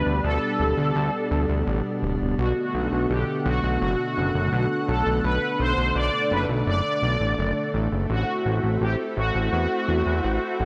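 At a relaxed 84 BPM in a straight 4/4, this romantic, dreamy synthwave excerpt moves from Dsus4 to Bm7 and settles on Am at 8.1 seconds. A fat, wave-folded analog bass holds the low end while a lush, warbling unison pad sustains chords with gritty 12-bit sampler character and chorus. On top, a round, brassy synth melody with vibrato sings through phaser and digital delay, all set in a hall reverb and bright 1980s-style digital production.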